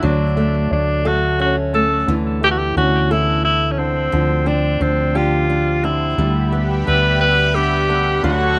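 A breathy tenor saxophone with light vibrato and delay sings a romantic, swaying melody in this six-eight pop ballad. A clear baby grand piano sits in the background, while a fingerpicked steel-string acoustic guitar plays arpeggios with its own delay and a round, up-front fretless bass carries ensemble chorus. A lush, detuned pad of sustained chords joins at 6.2 seconds, all within a rough home-demo mix with light reverb.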